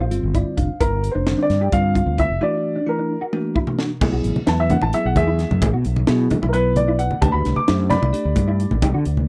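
Riding a straight 7/8 pulse, this funky, slick electric jazz fusion passage has a brisk, dry, close sound. A fretless electric bass stands out with a dark, round tone. A crisp fusion drum kit, with a high-tuned snare and tight kick in a small, pumping room, covers crash, hi-hat, kick, snare and toms. A bell-like tine electric piano opens with a short fill and then supplies bright, clean accompaniment, while a mellow electric guitar adds fingered, compressed stabs through an ensemble chorus. After a break capped by a drum fill, damped, low-tuned, saturated congas enter at 4.0 seconds, and the warm baby grand piano, which has carried the melody from the start, moves into a natural, up-front solo. The harmony passes from altered dominant tension into suspended chords, and the passage is cut from a longer piece.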